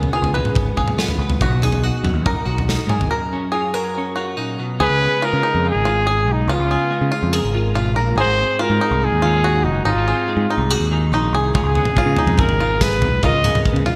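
Math rock meets midwest emo in this bright, playful excerpt from a longer piece, set in a straight 4/4. A clean, compressed twelve-string electric guitar lays down the accompaniment throughout, while a twangy, fingerpicked banjo sits up front with percussive arpeggios touched by delay. Underneath, a growling, overdriven picked bass carries the low end, and a modern drum kit with a punchy kick, a medium-tuned snare and gated reverb drives the opening before dropping out at 3.1 seconds for a break. A breathy, whispered trumpet with light vibrato and a soft attack takes the melody from 4.8 seconds, intimate and present in a pop style with its own delay, and the drums return at 11.5 seconds. The chords move through rich sevenths, ninths and thirteenths, and the whole piece carries a glossy 1980s-style digital sheen with a lush hall reverb over a small room ambience.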